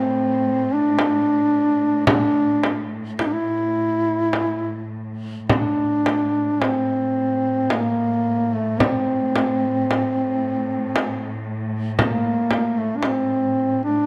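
Caucasian folk lament in a rubato three-beat feel, this longing, mournful fragment of a longer piece sets an up-front, dark duduk melody with vibrato, soft attacks and scooped notes over a low, bowed drone from a shadowy, expressive chamber string section with a smooth top, while an up-front acoustic frame drum with a warm, small-room tone plays from 1.0 to 13.3 seconds, the whole bathed in light reverb.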